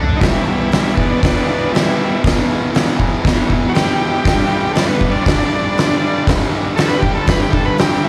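A drum fill from an oversized, low-tuned kit with a fat snare and punchy kick opens this gritty, raw garage rock fragment at 119 BPM in E minor, as a double-tracked fuzz guitar riff with slapback echo drives from Em to G5 at 4.2 seconds beneath a buzzy, overdriven combo organ solo with light vibrato, all caught live through the venue's PA with club reverb.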